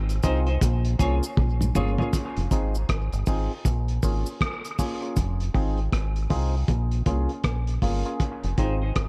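A round, dark fingered bass opens this deep, spacious dub reggae excerpt at 79 BPM in F minor, joined almost at once by a muffled, cloth-damped drum kit with a tight kick, rim clicks, hi-hat and toms, its gritty, saturated tone sitting up front beside the bass. Hollow, nasal organ stabs with chorus and dub echo, a twangy clean guitar, and a close, dry cabasa float over a swung groove that moves between Fm7 and Bbm7. A drum fill at 1.4 seconds leads into a long echo-soaked break, where the guitar drops away until 8.6 seconds and the cabasa drops out at 5.4 seconds.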